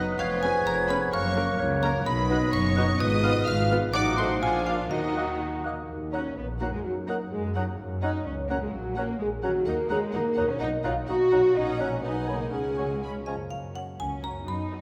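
A dark, punchy French horn section holds sustained chords through this playful, whimsical film cue at 127 BPM in 2/4, which opens in Eb minor and shifts to F# major at 9.7 s. A lush violin section carries the melody alongside a dry, woody xylophone that drops out at 5.4 s and returns at 13.3 s, while an airy silver flute, a shadowy cor anglais, a distant clarinet and a second violin section weave background lines. Viola section, mellow bassoon, ringing fingerpicked harp arpeggios and a focused cello and double bass foundation fill out the magical texture inside a wet scoring stage reverb.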